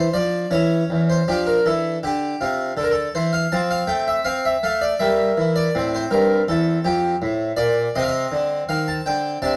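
In a flowing, rubato triple metre, this solemn baroque-style suite movement for solo harpsichord, cut from a longer piece, presents an up-front, French-style instrument with three sets of strings whose airy, plucked, brilliant tone spans from E2 to A5 across about 9.6 seconds, shaded by a dark production and moderate studio reverb as the harmony moves from D minor toward F and settles on a Cm69 chord near 7.9 seconds.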